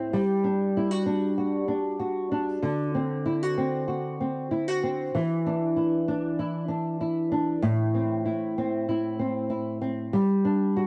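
Sunny and laid-back, this short indie pop excerpt at 96 BPM features a solo flamenco guitar, acoustic and thumb-plucked, sitting up front with a lush chorus and vibrato effect as it moves through G5, D7, Dsus2/E and Am before returning to G5 at 10.1 seconds, all captured in a dry, close 1970s-style studio sound with small room ambience.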